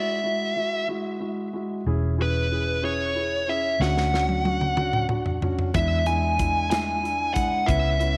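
A moderate echo-chamber reverb gives this short excerpt of a dramatic, aching six-eight pop ballad a spacious atmosphere. The music moves at 62 BPM in a straight 6/8 feel, tuned to A4 = 439 Hz. An up-front, smooth electric lead guitar carries the melody from the outset, its picked, overdriven tone trailed by tape echo. A concert grand piano with deep bass and long sustain plays the accompaniment through chords moving from Eadd9 to E6, Dmaj7 and E7. A round, punchy, foam-muted fingered electric bass enters at 1.9 seconds. An acoustic studio drum kit with a medium-tuned snare and tight kick arrives at 3.8 seconds with a fill that runs to 5.7 seconds.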